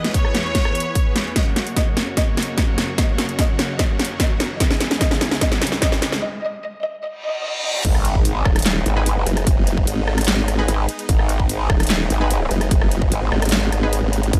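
This excerpt of heavy, chaotic wobble dubstep at 148 BPM in half-time G# minor opens with a clear, smooth studio violin section carrying the melody through vintage sampler grit and tape echo, over lush, detuned supersaw chords that pump and sit filtered in the background, while a big-room drum kit with a huge snare, metallic hats and a punchy, tape-warm kick drives a build-up with a drum fill, a break at 6.2 seconds and a reverse cymbal. At 7.8 seconds the drop lands on an impact as a growling, saturated bass with chorus and overdrive comes up front on G#, joined shortly after by a formant-sweep wobble bass. Bold, bright orchestra-hit-like synth stabs with tape echo punctuate the drop in the background.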